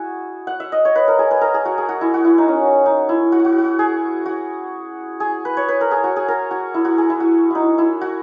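A lone santur opens this brief fragment of a longer Indian classical piece, playing raga Bhimpalasi in C# across the full 8.2 seconds, with its hammered strings ringing across a range of C#4 to F#5. The mood is solemn and full of longing, moving at 127 BPM in a straight 5/4, tuned slightly flat to A4 = 439 Hz. The shimmering santur sits up front in a rough home-demo mix, bathed in a wet studio reverb.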